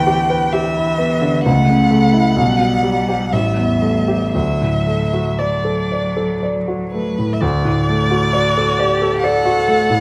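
In a recital hall's wet reverb, this brief excerpt from a tender, serene slow romantic movement for piano trio in 3/4 unfolds with flexible rubato, as a rich, expressive violin sings the melody with vibrato and portamento, a focused, close cello shapes a second line beneath it, and an intimate grand piano with audible action noise supplies the accompaniment.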